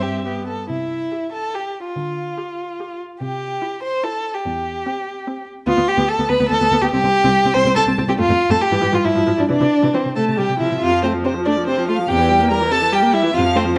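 Graceful and cheerful, this excerpt from a quick classical-period string quartet movement in C major moves at 143 BPM in 3/4 with a rubato feel, tuned to A4 = 442 Hz. The first violin carries the high melody with a smooth, even, vibrato tone that sits distant in the mix. The second violin plays the second line up front with soft attacks and expressive portamento, the viola adds close, gliding accompaniment, and the cello grounds it all with a warm, vibrato-rich bass. A new section arrives at 10.8 s, all heard through close, detailed microphones in a moderate recital-hall reverb.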